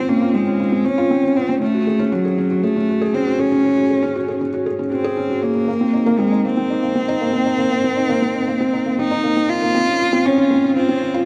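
A bowed cello with expressive vibrato and gliding portamento carries the tender, luminous melody of this electronica fragment over a felt-muted upright piano riff, intimate and mellow with its action noise audible, the cello close and both parts up front, touched by digital delay and bathed in a huge ambient reverb within a dark production as the harmony moves from Dbmaj7 through Gbmadd9 and a rootless Abadd9 back to Dbmaj7.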